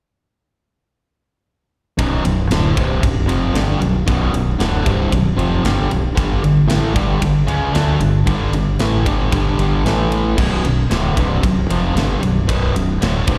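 A straight 4/4 heavy metal groove, aggressive and heavy, kicks in at 2.0 seconds with a sludgy, double-tracked guitar riff up front, carrying overdrive and slapback echo, over a growling, round, punchy fingered bass and a tight, polished drum kit with bright cymbals, the band heard as a live gig through the venue's PA with small room and recital hall reverb, moving from Bm through G5 and A5 back to Bm in a passage cut from a longer piece.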